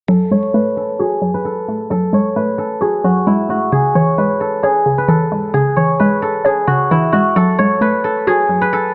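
A silvery, fingerpicked guzheng rings up front through this dark, hard-hitting hip hop excerpt in F# minor, its low-passed melody moving between E4 and C#5 over a half-time feel at 132 BPM. Alongside it, equally up front, a hollow, bouncy square-wave pluck with detuned chorus, a noise layer and a sub octave supplies the accompaniment from 0.1 to 8.9 seconds, its fast attack decaying away. A filter sweep runs across the passage as the chords move from F#madd9 to C#m and back, set in light reverb and small room ambience.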